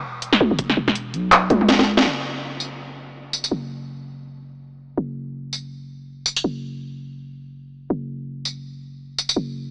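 A growling 808-style bass opens this cut from a longer half-time drum and bass piece, its buzzy sine tone striking with a fast attack and decaying, placed up front between E1 and C#2. The electronic drum kit enters almost at once, loud and up front, layering a cracking snare, bright hi-hats, handclaps, tambourine and toms under an overdrive that roughens their edges. A separate electronic kick, overdriven and re-recorded in a small room, knocks briefly at 0.6 seconds. A drum fill begins at 1.5 seconds, punctuated by a band accent at 2.0 seconds, and leads into a new section at 2.1 seconds that carries on with swung sixteenths over the half-time pulse. The sound is dry and gritty, with transformer saturation and an AM-radio character touched by only a light reverb. The mood is heavy yet spacious.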